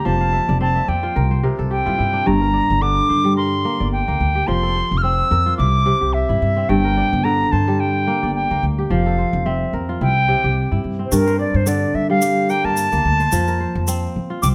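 A reedy wooden flute and a crisp, ringing fingerpicked kora open this flowing, hypnotic piece of West African string music, with the kora adding a fill in the first seconds while a dark, thumpy pizzicato upright bass on gut strings settles in beneath them. Over a lightly swung groove, the three parts circle through F, C and G minor chords in a light reverb. At 11.1 seconds the flute takes a solo, and a grainy tube shaker joins until this cut-off portion of a longer performance ends.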